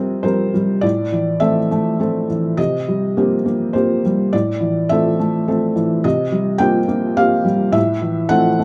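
A small room with moderate reverb surrounds a felt-muted upright piano placed up front, its soft, mellow tone carrying the audible noise of the action. This short excerpt of neoclassical minimalist piano runs about 8.6 seconds and feels intimate and melancholic. The piano plays solo in 3/4 at around 104 BPM, with a rubato feel that lets the time breathe. Its part spans from A2 up to G5, with a natural, muted sound. The harmony moves back and forth between Cm7 and Am, a simple alternation that gives the passage its wistful, circling character.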